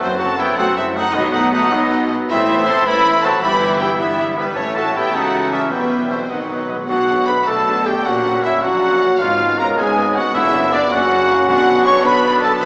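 Swashbuckling and adventurous, this heroic adventure film cue in 6/8 at 105 BPM moves from E harmonic minor into B minor at 6.9 s. A lush, vibrato-rich violin section carries the melody, shadowed by a second, very quiet violin line, an airy distant flute, a lightly vibrato oboe and a soft, roomy clarinet. Beneath them sit smooth violas and background cellos and double basses, mellow French horn and bright trombone chords, ringing thumb-plucked harp arpeggios, vintage trumpet stabs up front, and timpani struck with medium mallets in brief bursts, including a fill at 6.3 s, all heard from further back in a reverberant scoring stage with a small-speaker sound.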